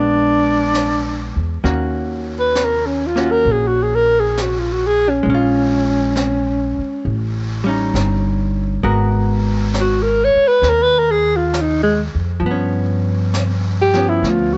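Jazz ballad in Eb minor at a slow 67 BPM with a swung feel, smoky and wistful, in a short cut from a longer piece. A breathy, close-miked alto saxophone carries the melody up front with subtone and vibrato, taking a solo from 1.6 seconds over a dark, clean, picked hollow-body guitar comping chords like Ebm7, A7#11 and Abm9, while a woody, thumpy gut-string upright bass plays pizzicato beneath. Brushes on a high-tuned snare and hi-hat enter at 0.7 seconds, sitting mid-forward in a studio room with light reverb and a rolled-off top.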